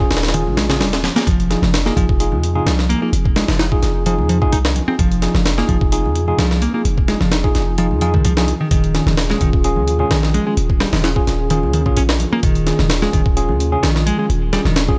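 Raw and funky, this breakbeat excerpt in F minor moves at 129 BPM with a light swing on the 16ths, driven by a gritty, pitched-up sampler-style drum kit with a thumpy kick and high-tuned snare sitting up front. A deep, boomy 808-style bass carries the low end and a punchy, bright picked electric bass plays a riff above it, while a worn, slightly out-of-tune tine electric piano plays stabs through tape echo over Eb9sus4 and Fm7 chords. Beneath it all, a very quiet, warbling lo-fi pad holds dark sustained chords, and distant congas ring faintly as if in a large room.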